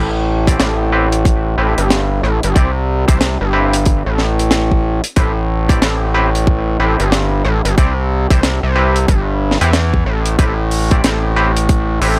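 An overdriven clav and a gritty, driven synth bass open this funky glitch hop fragment together, with the electronic kick and a tight funk drum kit arriving at 0.5 seconds. The clav plays bright, twangy, stringy stabs roughed up by vintage 12-bit sampler grit, sidechain pumping, a low-pass filter and tape echo. Beneath it, the up-front bass is aggressive and saturated, blending sawtooth, sine, oscillator sync and ring modulation into a resonant, plucky tone pushed further by tube saturation. The kick is layered, produced and tape-toned, while the acoustic kit adds hi-hat, rim click and a high-tuned snare with a small-room, mid-forward character. At 92 BPM in 4/4 with a 62% swing on the sixteenths, the groove sits on a single Am9 chord in A minor, captured as a dry, gritty hardware recording touched by studio reverb.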